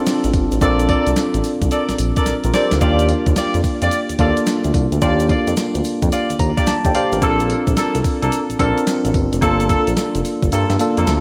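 A swung sixteenth-note groove from a crisp, sampler-style 8-bit drum machine, with a thumpy kick, fat snare, hi-hat and tambourine, drives this slick, confident slice of new jack swing R&B, while a grainy tube shaker sits in the background and a smooth sawtooth synth bass with vibrato holds the low end. A worn, slightly out-of-tune tine electric piano with subtle chorus sits up front, moving through major-seventh and ninth chords toward a minor ninth and playing a fill around 6.1 seconds, as a mellow vintage horn section adds stabs through tape echo. The drums break for a short fill at 2.3 seconds and the kick drops out at 10.5 seconds, all bathed in a dreamy plate reverb.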